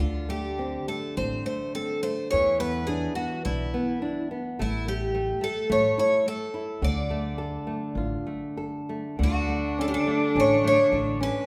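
A mournful, passionate fado-style ballad fragment with free rubato timing, where a shimmering, octave-doubled twelve-string acoustic guitar carries the picked melody up front over fingerpicked nylon-string guitar accompaniment with audible finger squeak and woody pizzicato upright bass, until a focused, distant bowed cello with vibrato adds a second line at 9.2 s, inside a reverberant recital hall.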